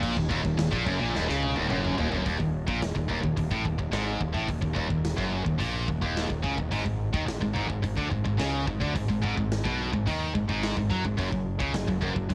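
A straight 4/4 pulse at 108 BPM drives this dark, heavy metal excerpt in Eb minor, moving from Ebm to Ab5 at 6.7 seconds and Gb5 at 11.2 seconds. A tight, picked distorted guitar sits up front on the riff, backed by a high-gain guitar in the background, a very quiet double-tracked sludgy guitar that drops out at 2.2 seconds, and a punchy fuzz bass, while a big acoustic rock kit with bright cymbals, a medium-tuned snare and tight kick plays a fill from 1.1 to 2.3 seconds. The whole thing has the grainy character of a home cassette recording in a small room, with tape coloring the two main guitars and the drums.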